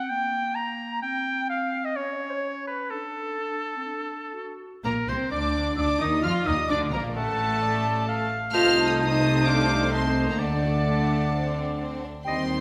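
A bright, up-front oboe with light vibrato stands out from the opening, joined from 0.0 seconds by a warm clarinet and a wooden flute with vibrato in the background, the three woodwinds carrying this stormy, dramatic classical-period movement at a quick 129 BPM in straight 4/4. At 4.8 seconds the strings arrive together: a clear, pure violin section takes the melody high in its range, while a second violin section and an intimate viola section, both bowed sul tasto with soft attacks, sit close in the background. Beneath them, a smooth-topped cello section and a rich, distant double bass section give a floating, bowed foundation. Just after, at 4.9 seconds, a dark, roomy French horn section adds sustained chords from afar. The harmony moves from D through Cm11/Bb, Dm/A and Adim/C before returning to D, and a scoring-stage reverb lends the whole ensemble a wet sense of space in this short cut from a longer piece.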